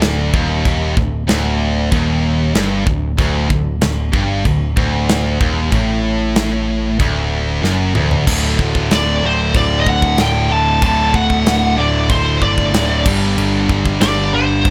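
This heavy, relentless metal passage opens with a wall of riffing guitars: a dark, double-tracked fuzz guitar and two bright, high-gain distorted guitars sit in the background, backed by a growly, punchy overdriven picked bass. An acoustic studio drum kit recorded in a small room drives the straight 4/4 feel with a tight kick, a medium-tuned snare, toms, crash and china cymbals. A drum fill at 7.6 seconds leads into a new section, and at 8.9 seconds a high-gain lead guitar enters up front, carrying the melody in a higher register with distortion and digital delay. Near the end the harmony moves to a G5 chord under the lead line, and a light reverb gives the mix a bit of space. The recording is cut from a longer piece.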